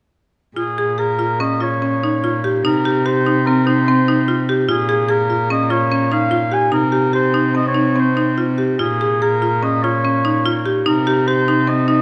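Contemporary chamber music in 5/4 at 146 BPM, this restless, hypnotic passage in Bb dorian is cut from a longer piece and sways between Bbm7 and Cm7 chords. A buzzing, woody marimba struck with hard mallets spins bright, dry arpeggios up front, while a bowed cello holds a rich, pure bass line played sul tasto with a soft attack. Above them a solo oboe sings the melody in a classical style with light vibrato, and a moderate concert hall reverb lends the ensemble a roomy glow.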